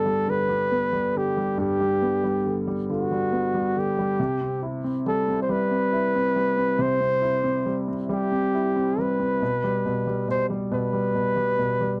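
A flugelhorn carries the melody in this heartfelt, tender pop fragment, sitting up front with a punchy, pop-style tone, vibrato and scooped notes as it moves between F#4 and C5. Beneath it, a concert grand piano supplies the accompaniment from G2 to E4, sounding intimate and natural, with deep bass and the mechanical noise of its action clearly audible. Both parts play through the whole 12 seconds, a single section cut from a longer piece, at a slow 46 BPM in 6/8 with a straight feel. The harmony moves from G to C at 4.2 seconds, then to a rootless A7sus2 over B at 9.4 seconds. The sound is dry and close in the manner of a 1970s studio, touched with light reverb and a warm, unhurried glow.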